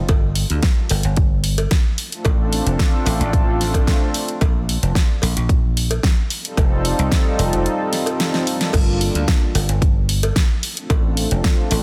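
A dense, heavily limited modern mix with light reverb frames this sleek, cosmic nu-disco excerpt, where a punchy, up-front electronic kick and a layered pop drum kit with a fat snare, hi-hat and crash sit in studio reverb while an acoustic cowbell stays in the background with a small-room feel. A dry, foam-muted thumbed slap bass pumps to the sidechain up front, and from 0.5 s a dark, smooth analog pad of sawtooth and triangle with a sub octave and slow attack adds chorus, dub echo and the same pumping. A drum fill at 8.3 s leads into a Gm7 chord, after a progression through G7, Dm7 and F7.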